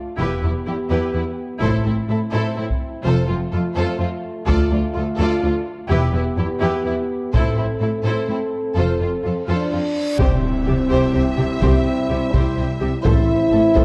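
A warm French horn section opens this dark, epic orchestral film cue with sustained chords, joined almost at once by the full string body: a bright, focused violin section carrying the melody, a smoother second violin line, rich violas in accompaniment, and lush cellos and double basses anchoring the bass. The piece moves at 84 BPM in a straight 6/8, building over a minor-leaning progression from Em through Am, F and Dm. From 1.6 seconds a taiko ensemble struck with hard sticks drives the build-up, its acoustic attack sitting close against the vibrato-rich strings. A huge, dark reverse cymbal rises in the background into an impact at 10.2 seconds, where the harmony lands on C and a clear trombone section adds sustained chords. Articulate timpani on calf heads, played with hard mallets, sound an A just before the cut near 13.8 seconds as the chords return to Am. The whole is set in a moderate scoring-stage reverb with a dark, warm production, and it is cut from a longer piece.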